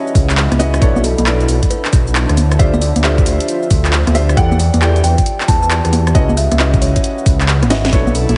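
Skippy and soulful, this short cut from a longer two-step UK garage track rides a swung 135 BPM groove, where a gritty, thumpy overdriven kick and a layered house kit with a cracking snare, handclaps, congas, shaker, hi-hat and rim click drive under a rumbling, detuned saw bass sitting up front. A worn, boxy grand piano plays stabs with dub echo over a moody ambient pad with chorus and sidechain pumping, while a woody, hollow kalimba melody with dub echo rings in the background through chords moving from C#m11 through Bm11, Dm11 and Em11. The kick drops out at 7.5 seconds ahead of a drum fill at 7.7 seconds, an airy, breathy pad enters at 7.9 seconds, and the whole mix carries a heavily compressed, radio-like sound.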